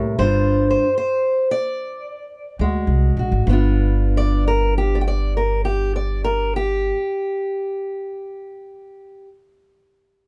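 Swung eighth notes roll through a steady 4/4, and the pulse slows over the opening 3.5 seconds. This is a short cut from a longer acoustic country blues duo, soulful and swaggering in mood. A fingerpicked steel-string parlour guitar carries the melody across a broad range from start to finish. It sounds boxy and warm with fresh strings, and it sits up front. An upright bass enters at 0.2 seconds, playing pizzicato low lines with a woody, warm tone, and it drops out at 6.9 seconds while the guitar continues. The harmony moves from G5 through Ab9 to G7, and the dry, close-miked sound keeps every detail of both instruments near and intimate.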